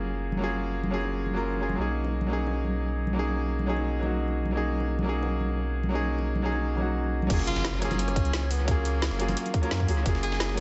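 Dreamy and warm, this liquid drum and bass excerpt at 174 BPM in F# major opens with a brilliant grand piano carrying tape echo over a round, deep sine sub bass, with soft-handed congas and bongos in the background moving through analog delay across F#maj9 and Bmaj13 chords. At 7.3 seconds the drop arrives with a tight electronic kick, a layered kit with a woody snare and metallic hats, a gritty sampler-style kit with a fat snare, and a very quiet impact. Then a bright jazz-style tenor saxophone solo with vibrato and tape echo enters at 7.5 seconds, all within an echo-heavy mix with light reverb and a dusky top end.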